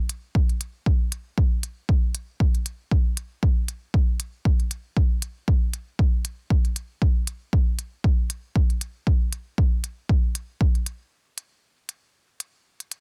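Hypnotic and cavernous, this techno excerpt at 117 BPM in 4/4 rides a 56% swing on the sixteenths, with smooth, layered electronic hi-hats running from 0.1 to 13.0 seconds over a punchy, up-front electronic kick drum that drops out at 10.7 seconds, leaving the hats for a break from 11.1 seconds, all in a dry, dense, heavily limited modern master.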